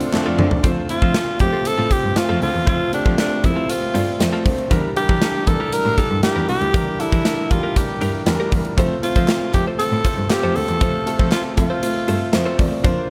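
Romantic and glossy, this 1980s-style pop excerpt at 118 BPM opens with a drum fill on a huge, punchy arena kit and a shimmering pad that stops at 0.6 s, while a raspy, growling alto saxophone carries the melody from the start through digital delay over a deep-voiced concert grand piano, a smooth bowed cello bass with vibrato, a clean, chorused electric guitar riff tucked in the background, and crisp group handclaps that return at 9.3 s.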